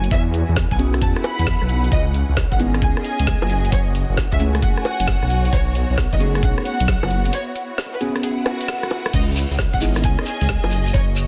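UK garage in a bouncy, late-night two-step vein at 133 BPM in C# minor, this swung excerpt pairs a rumbling, saturated detuned saw bass that pumps up front and a knocking electronic kick with a garage kit of woody snare, metallic hats, rim click, bongos and crash, while a dark, woody violin section carries the melody through dub echo over mellow chord stabs treated with chorus, phaser and echo, a lush pumping string texture and a very quiet ethereal pad, moving through chords from E6 to C#m9, F#m9 and B13 with a break at 7.3 seconds and a grainy shekere entering at 9.1 seconds.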